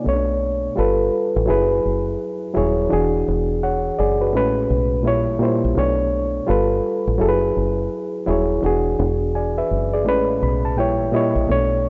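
R&B with a neo-soul lean, this short excerpt cut from a longer piece sets an introspective, soulful mood over a swung sixteenth-note feel in 4/4. An overdriven reed electric piano carries the accompaniment, its reedy, gritty tone pushed through a combo amp and placed up front, moving through rich extended chords such as Bm9, G9, F#9sus4 and Amaj9 before a passing A#dim7 leads the cycle back around. Beneath it, a deep dub fingered electric bass sits low and round, its dark, foam-muted sound fed direct and amped and also kept up front. Near the close, from 10.1 to 11.5 seconds, the electric piano adds a brief fill. A lush hall reverb gives the pair a sense of space, though the rough home demo mix leaves the top end dull and softened.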